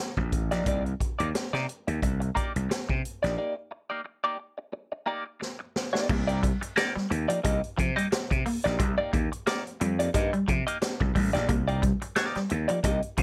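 Lightly reverberant and punchy, this sly funk excerpt swings on a roomy, distant-sounding big-band drum kit with a high-tuned snare and rolled-off top, a growly overdriven slap bass and a compressed, wah-coloured clean electric guitar, with a break from 3.4 seconds capped by a drum fill, before a twangy second clean guitar riff with subtle chorus and a dry, metallic cowbell in the background join at 6.1 seconds.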